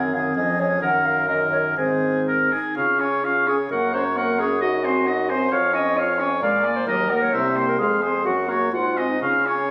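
A mellow, hollow silver flute carries the melody with vibrato and tongued notes, entering at 0.1 seconds above a clear, distant oboe on the second line in this quick, graceful and spirited classical-period movement for wind quintet in Db major, moving at 120-134 BPM in 2/4 with a rubato feel. A smooth-topped clarinet and a close-miked French horn fill out the accompaniment while a bassoon anchors the bass, and the harmony passes through chords such as Ebm7/Gb, Bb7, C7 and Ab7 before the brief passage is cut off at 9.7 seconds. The ensemble sits in a moderate recital-hall reverb, captured on a phone in the room with added studio reverb and compression.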